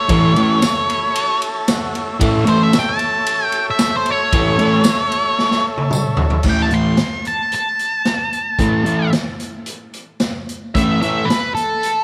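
Garage rock at 113 BPM in A major, swaggering and rowdy, this excerpt opens with an octave-fuzz lead guitar solo over a double-tracked fuzz guitar riff, a buzzy overdriven combo organ with heavy vibrato holding chords until 6.4 s, a gritty, saturated drum kit with a punchy kick, a jingly tambourine in the background, and a drum fill at 5.4 s leading into a new section at 6.5 s, all in a moderate echo-chamber reverb.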